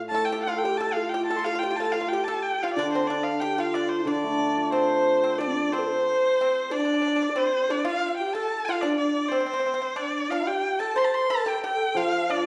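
Loosely rubato in 2/4 at around 91 BPM, this fragment of wistful, tender Chinese chamber music in the D yu mode opens with a shimmering, ringing hammered dulcimer accompaniment that drops out at 6.1 seconds and returns only at 11.9 seconds. Up front, a clear, focused yet distant-sounding erhu carries the high melody with vibrato and portamento, while a soft-attacked, breathy low xiao and a bright, percussive pipa played with fingerpicks weave second lines beneath it, the piece shifting into a new section at 5.4 seconds. A wet recital-hall reverb gives the ensemble the sound of a church or concert hall.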